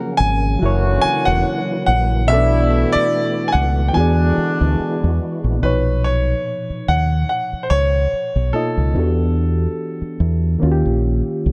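A bright concert grand piano sings the melody over a reedy, phased electric piano, a fat, lightly overdriven tonewheel organ with key click and slow rotary speaker tucked in the background, and mellow, tight horn stabs, while a round, punchy fingered bass arrives at 0.2 seconds in this relaxed, swung R&B fragment; the horns drop out at 5.2 seconds and the organ at 5.6 seconds, leaving piano, electric piano and bass in a dark, lightly reverberant mix.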